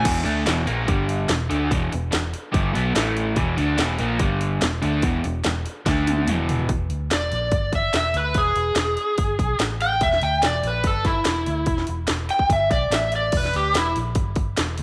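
A crunchy, double-tracked guitar riff opens this swaggering, gritty blues rock and southern rock fragment at 144 BPM, with a round, dark, foam-muted fingered bass and an up-front, layered drum kit of punchy kick, cracking snare, hi-hat, toms and crash driving a straight 4/4 under a moderate spring reverb. The riff carries things until a drum fill at 5.9 seconds, after which it drops out. From 7.1 seconds a bright, overdriven slide guitar with slapback echo takes a swaggering solo high over the bass and drums to the cut.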